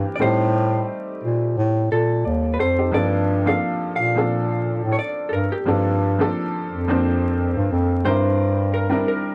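Melancholic and hazy, this short cut from a longer hip hop piece moves at a relaxed swung pace, its dry, gritty recording dusted with vinyl crackle and light reverb. A dark, clean hollow-body jazz guitar picks out the melody through a low-pass filter while a worn, woody, slightly detuned upright piano, also filtered, sits up front in accompaniment over chords moving from Am7b5 to Gm11 and C9/G. Carrying the bass and standing out in the mix, a mellow bass clarinet plays with vibrato, a soft attack and a jazzy touch until 9.0 seconds.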